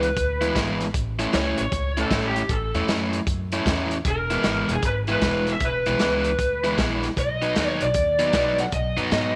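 Laid-back and rollicking, this excerpt of an electric blues shuffle in E major swings at 154 BPM. A lo-fi, overdriven lead guitar through a small cranked amp carries the melody up front over an overdriven semi-hollow guitar riff and a woody, growly pizzicato upright bass, while a gritty, saturated breakbeat drum kit with a rolled-off top drives hi-hat, tight kick and snare until 9.2 seconds, all set in a moderate echo chamber reverb as the chords move from E to A, back to E, then B.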